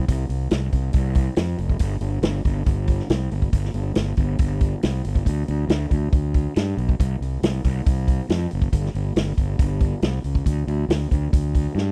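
A straight 4/4 groove at 139 BPM drives this gritty blues rock power trio and southern rock cut. A growly, bright fingered electric bass with overdriven fuzz and a punchy attack plays in the low register beside a natural, small-room vintage drum kit of hi-hat, kick and medium-tuned snare with a rolled-off top, both up front in a dry, close 1970s-style studio sound tuned to A4 = 439 Hz, until a drum fill arrives at 11.8 seconds.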